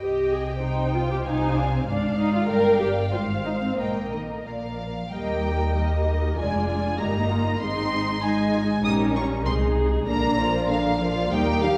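A quick classical-period movement for string orchestra in Eb major at 97 BPM in 2/4, dramatic and urgent, taken with a rubato feel and cut from a longer piece that moves from a C minor opening toward a close on Bb. A lush, smooth first violin section carries the melody high above a darker, woody second violin line, while expressive violas with a soft attack fill the accompaniment and focused cellos join an even, up-front double bass section on the bass. All five sections play with vibrato throughout the roughly 11.8 seconds, heard from further back in a scoring stage with a wet reverb.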